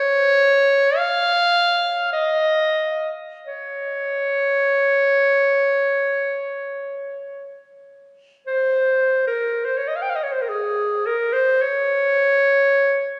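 A lone clarinet opens the recording, its clear, soft-attacked tone sitting present and up front in a free, expressive classical solo. The mood is yearning and meditative, with the playing moving in an unhurried rubato that lets each phrase breathe. The clarinet stays within a compact middle register, from Ab4 to G5, and carries the whole line unaccompanied. A long, wet church reverb surrounds it, and the phone-in-the-room capture lends the sound a dulled, veiled top end. Around 9.3 seconds the music moves into a new section, which runs until the fragment, cut from a longer piece, ends at 13.2 seconds.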